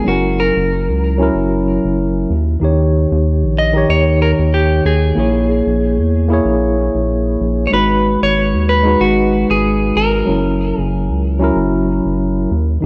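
Sunset chillout with a wistful, relaxed mood and a lightly swung groove, cut from a longer piece. A clean, dark electric guitar carries the picked melody through a digital delay, playing from the start until 11.2 seconds. Beneath it, a bright tine electric piano, softened by a low-pass filter and heard as if through its own built-in speakers, supplies the accompaniment across the full 12.9 seconds. A round analog bass with a fast attack and deep, sustained tone enters at 0.1 seconds, its wave-folded character adding a dark edge. The harmony moves from F#7 through D#7, A#m7b5 and G#m7 before returning to F#7, all bathed in a lush hall reverb and the warbling pitch drift of worn cassette tape.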